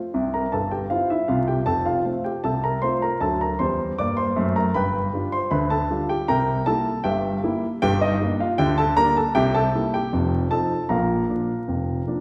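A wet recital-hall reverb with a decay of about 1.6 seconds surrounds this short solo piano piece, and a layer of vinyl crackle gives it the feel of an old record played in a church or concert hall. It is cheerful, lively ragtime at 78 BPM in 2/4 with a straight feel. A baby grand piano plays alone throughout the 12.2 seconds, its tone warm, polished and up front, spanning from F1 in the bass to D6 at the top. The harmony moves from C through F, D7, G7 and C7, settling into B-flat major from 7.8 s as Gm, C7 and F7 lead to a B-flat chord at 10.9 s. Cut from a longer piece, this excerpt presents a single present stretch of the tune.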